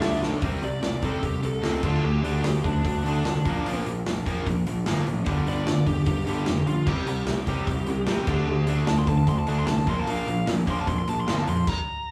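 A dark, bluesy overdriven lead guitar solos from 0.4 seconds over a heavy, driving hard rock groove at 149 BPM, as a growly fuzz bass sits up front beside a punchy big rock drum kit with bright cymbals, two bright distorted and hollow-body rhythm guitars churn a background riff through C5, D5, Bb and G5, and after a short drum fill the band plays live in a stone-walled room until a stop at 11.7 seconds lets the solo ring briefly alone in this cut from a longer piece.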